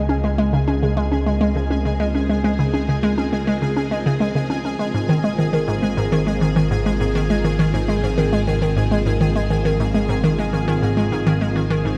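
Soaked in a huge, dark reverb with a long seven-second tail, this short cut from a longer piece of ambient, sequencer-driven space music feels cosmic and luminous. Up front, a hollow, nasal square-wave pluck carries a bouncy riff from 0.1 s, its detuned tone and noise layer thickened by chorus and echoed with delay. Beneath it, a lush vintage string machine fades in over the full span, its slow-attack sawtooth chords mellowed by ensemble chorus and a sub octave. A fat, thick analog bass holds sustained low notes, while a bright, pulsing gated triangle texture shimmers higher up, tempo-synced and detuned with chorus and its own reverb. The harmony shifts once, at 4.8 s, in a steady straight four-beat pulse.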